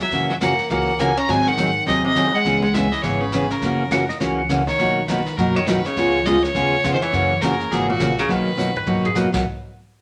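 A clear, biting fiddle leads this swinging, playful western swing excerpt in B major at 205 BPM, its bowed melody up front with light vibrato and a smooth top. A full-bodied picked dreadnought acoustic guitar fills in the harmony while a compressed hollow-body archtop traces a second line, all over a woody, thumpy gut-string upright bass and a small-room brush kit with a boomy kick. A dark, slide lap steel adds brief volume swells at 3.9 and 8.8 seconds, and a drum fill arrives at 8.6 seconds, all set in a wet studio reverb.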